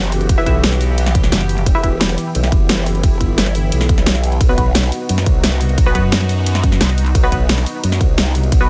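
Tense and mechanical, this short cut of dark technical drum and bass runs at 175 BPM in E harmonic minor, moving from Em to B as an up-front growl bass with formant-filtered snarl, overdrive and sidechain pumping sits under a bright, evolving sawtooth pad whose sustained chords also pump with the beat. A punchy, layered electronic kick enters at 0.3 s over a drum kit of hi-hat, ride cymbal and a huge snare that is already playing from the start, both re-recorded in a small room, while muted, mellow filtered dub chord stabs with tape echo come and go. A detuned, pulsing pluck wobble bass surfaces in brief bursts at 1.3 s and 6.8 s, and the dry mix keeps its top end rolled off above 10.6 kHz.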